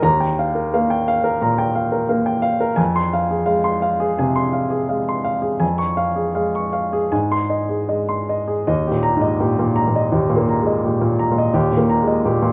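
Peaceful and intimate, this short cut from a longer piece of neoclassical minimalist piano moves at a gently rubato 76-89 BPM in 4/4. A single baby grand carries it alone from start to finish over 12.5 seconds, ranging from Eb2 up to Db6. Its tone is warm and natural with a short sustain, placed up front in a light reverb that keeps the sound close. The harmony opens on Ebadd9, passes through Fm, Db/F and Ab, then returns to Eb at 8.7 seconds as a new section begins. The tuning sits slightly low, at A4 = 439 Hz, lending the instrument an unhurried, private character.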